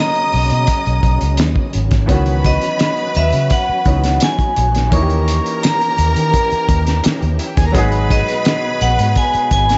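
Smooth and bittersweet, this short cut from a longer 1970s-style soul piece rides a straight 4/4 groove as a ringing, metallic vibraphone played with hard mallets carries the melody over a lush, bowed string section singing a second line. A clear concert grand and a lightly overdriven tonewheel organ with key click, chorus vibrato and slow rotary speaker sit in the background, while a muffled, cloth-damped drum kit with a fat snare enters at 0.1 seconds and a round, foam-muted electric bass joins at 0.3 seconds, both up front. Studio reverb frames the rolled-off sound as the chords move from Bmaj9 through C#m11 and D#7b9 to G#m7.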